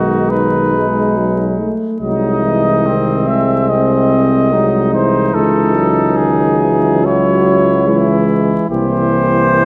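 A moderate concert-hall reverb of about 2.0 seconds surrounds this brief brass band passage, with a layer of vinyl crackle across the recording. It is a lyrical, hymn-like classical piece in 4/4 at 72 BPM, taken with a flexible rubato feel and tuned to A4 = 444 Hz. Up front, a warm, soft-attacked cornet carries the melody between F#4 and E5. Beneath it, a clear flugelhorn sings a second line, and in the background a present trombone and a mellow, smooth-topped euphonium fill in the accompaniment. A tuba with light vibrato and a roomy tone anchors the bass, and every part sounds from start to finish across the 9.7 seconds. The harmony moves from B7 through G#7/B# and C#m before reaching C7 at 8.7 seconds, where the fragment breaks off.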